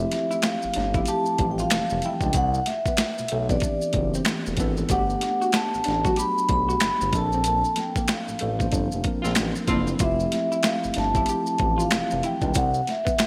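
A ringing vibraphone with soft mallets carries the melody over a mellow tine electric piano and a smooth, nasal synth bass in this relaxed, sensual neo-soul R&B excerpt at 94 BPM in F major, with a gritty, overdriven boom bap drum kit up front, a slightly broken-up electric guitar with lush chorus tucked in the background, and saturated maracas and finger snaps filling out the groove. The harmony moves through rich major-ninth chords, and during a band accent a punchy horn section adds brief stabs at 9.2 seconds. Everything sits in a moderate hall reverb with a bright 1980s-style digital sheen.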